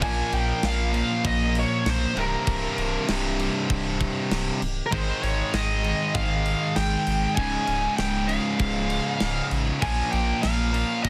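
Heavy metal, relentless and heavy, built on a distorted high-gain lead guitar melody with delay, over three bright, picked rhythm guitars (one double-tracked and overdriven, sitting very quiet) churning a riff over Bbm, Cm, Ab and Db chords, a deep, smooth sine sub bass up front, a very quiet nasal cornet stop on pipe organ holding sustained chords, and a tight studio drum kit with bright cymbals, medium-tuned snare and a softly clipped kick, all under light reverb in a dense, heavily limited modern master.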